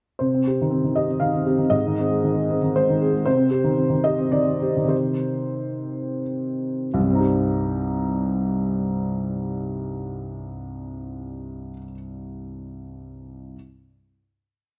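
Bathed in a moderate recital-hall reverb, this complete neoclassical minimalist piece for solo felt-muted upright piano sounds soft, dark and boxy, sitting up front as its wistful, melancholic single-line melody drifts in rubato triple time over inner broken chords moving from Cm to Ab and back to Cm, slowing from 2.5 seconds until a final chord arrives at 6.9 seconds.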